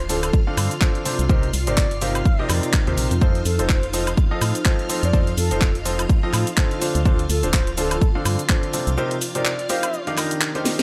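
A punchy, up-front electronic kick drives this euphoric, joyful piano house piece, its tape-warm thump carrying the sound of a large room and dropping out at 8.6 seconds. Around it, a layered house kit adds a cracking snare, handclaps, hi-hat, shaker and woodblock with a swung sixteenth-note feel, ending on a drum fill at 10.7 seconds. A clear, present grand piano plays the riff through sidechain pumping and tape echo, while a hollow, dark, organ-like FM bass with a fast, decaying attack pumps beneath it. A soft, breathy, flute-like synth lead carries the melody with a warbling vibrato, subtle chorus and tape echo. Shimmering vintage string-machine violins hold bright chords in the background, a very quiet granular cloud pad adds a blurred, evolving haze, and the dry, gritty mix moves through Dm7, Cm7, F7 and Ebmaj7 in this short cut from a longer track.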